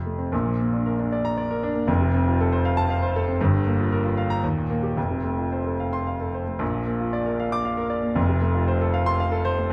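Brilliant and sparkling, this short excerpt of a classical virtuoso piano study moves in a flexible, rubato 3/4 at about 116 BPM in Bb major, with harmonies passing through Bb, F, Gm7 and Eb before returning home. A clear grand piano plays alone from 0.0 to 9.7 seconds, ranging from deep bass to bright upper notes. It sits intimate and up front, polished yet with its action noise audible, inside a small room's moderate reverb and a dark overall production.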